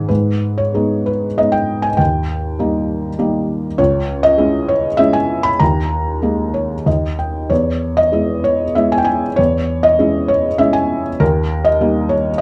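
Bittersweet and cool, this lyrical classical fragment, cut from a longer piece, features a soft, felt-muted upright piano with audible action noise playing alone and up front in an uneven, rubato triple time, moving from G#m through D# and C#m with a brief fill between 6.2 and 7.5 seconds before settling on E and closing back on D#, all within a small, dark-sounding room.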